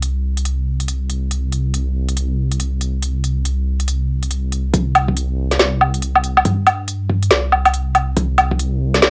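A dark, rumbling detuned saw bass and a deep house drum kit with a woody snare, smooth high-passed hats and woodblock open this meditative deep dubstep fragment at 140 BPM, swung on the sixteenths in a half-time feel, before a deep electronic kick enters at 4.7 seconds as a build-up runs to the cut at 9.1 seconds, all bathed in light reverb and the grain of a home cassette recording.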